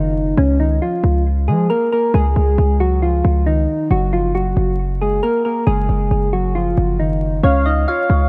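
A punchy, heavy 808-style bass hits hard and up front beneath soft, round electric-piano-like synth keys, whose mellow melody is coloured by chorus, delay and a low-pass filter sweep in this half-time hip hop excerpt at 136 BPM in Db major. The mood is triumphant yet wistful as the harmony moves from Dbadd9 to Gb at 3.9 seconds and back. At 7.4 seconds a velvety, smooth synth lead with vibrato joins as a second line, all heard through a dry, worn recording with warbling old cassette tape, vinyl crackle and drifting pitch.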